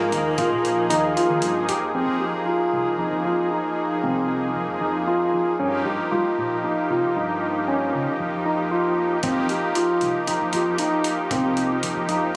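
In a straight 7/4, this brooding, intricate progressive band piece opens with a raspy alto saxophone line over a gritty boom bap sampler-style kit of hi-hat and thumpy kick, both gone by about 1.8 seconds, while a brassy, detuned analog pad with chorus, a barky, lightly overdriven tine electric piano playing arpeggios and a growly picked electric bass carry on through a phone-caught club reverb until the drums return at 9.2 seconds.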